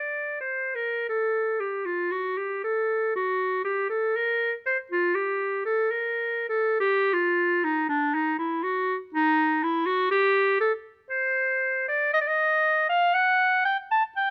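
Introspective and flowing, this baroque-style classical fantasia in G minor is played by a lone clarinet, moving freely in rubato around 60 BPM in 3/4. The bright, vintage-toned clarinet sits up front for the whole 14.3 seconds, ranging from D4 to A5. Close, detailed microphones and light reverb capture this short fragment of a longer piece.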